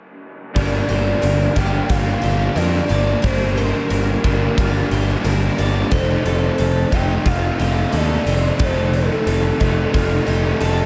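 A straight four-four pulse comes from a huge arena drum kit, its punchy kick and hi-hat ringing in a hall-like space, in this brooding, dreamy stretch of shoegaze and dream pop rock cut from a longer piece. Up front, a fuzz-drenched picked electric bass anchors the low end while an overdriven electric guitar with subtle chorus grinds out a riff, alongside a raw, lo-fi garage guitar in the background whose overdrive trails into reverse reverb. A picked twelve-string acoustic guitar adds shimmering, octave-doubled arpeggios from a full-bodied dreadnought, softened by subtle chorus and analog delay. Over it floats a pure, breathy sine lead with a dark sub-octave and noise layer, its soft attack, vibrato and portamento gliding through a sustained melody washed in chorus and analog delay. The harmony rests on Gm7 before shifting to F7 at 5.9 seconds, and the whole mix is soaked in plate reverb for a hazy, dreamlike glow.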